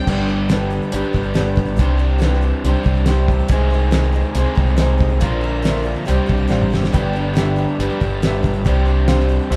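In a moderate large-studio reverb, a band playing live in one room carries this open-road, nostalgic slice of folk rock and heartland rock at 140 BPM in a straight 4/4. Up front, a crunchy, double-tracked overdriven guitar plays the riff over a deep, round fingered electric bass. Meanwhile, a shimmering, octave-doubled twelve-string acoustic with finger squeak and a woody upright piano sitting in the background fill out chords moving from G through Csus2, Abmaj7/C and Bbadd9. The damped 70s kit, with its fat snare, tight kick and dark cymbals, enters at 0.1 s and drops a drum fill at 6.5 s before the progression returns to G.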